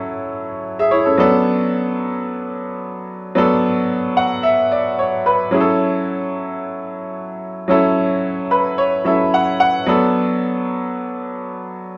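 Disco in F# minor at 111 BPM, this glamorous, sultry excerpt features a clear, open concert grand piano playing solo up front with deep bass, moving between F#m7 and Bm7 chords and adding fills at 3.9 and 8.2 seconds, all set in a wet studio reverb that gives the sense of a live room.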